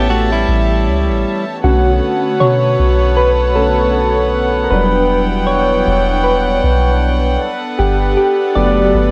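A dry, gritty hardware recording with light digital reverb frames this sensual, longing swung R&B fragment, where deep, round 808-style bass anchors the low end and floating bowed studio strings hold sustained chords beneath mellow electric-piano-like synth keys coloured by chorus and phaser, while a clean, picked direct-recorded electric guitar arpeggiates only until 1.4 seconds, after which the up-front keys take a solo from 1.6 seconds over a progression moving from Bm7 through Em9 to Gmaj7.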